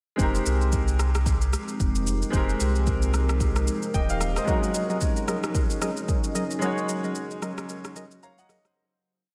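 A swung amapiano groove sits up front: a steady shaker, a soft deep kick, syncopated rim clicks and metallic hi-hats give this short, complete piece its late-night, soulful pulse. Underneath, a round sine sub bass plays a dotted figure, and a clear, intimate baby grand piano holds rootless chords with audible action noise, colored by analog chorus. From 1.1 s a dark, detuned ambient pad swells in slowly with chorus and its own reverb, sustaining moody chords over the harmony's move from Fm11 to Gb69. At 4.5 s the bass gives way to short, syncopated organ stabs, hollow and percussive, treated with chorus and tape echo. A break and fade-out begin at 6.6 s, with the piano adding a brief fill in the closing moments, all in a dreamy mix soaked in lush hall reverb.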